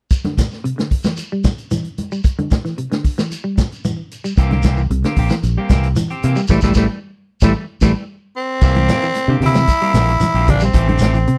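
A dry, close 1970s-style studio sound frames this hypnotic, driving afrobeat excerpt, where a punchy vintage drum kit, soft-handed congas and a grainy, distant shekere run beneath a clean semi-hollow electric guitar playing arpeggios with subtle chorus and slapback echo; a round, dark fingered bass and twangy, slightly broken-up guitar stabs join at 4.4 seconds, a band accent lands at 6.5 seconds, and a raspy, gritty tenor saxophone takes the melody up front from 8.4 seconds.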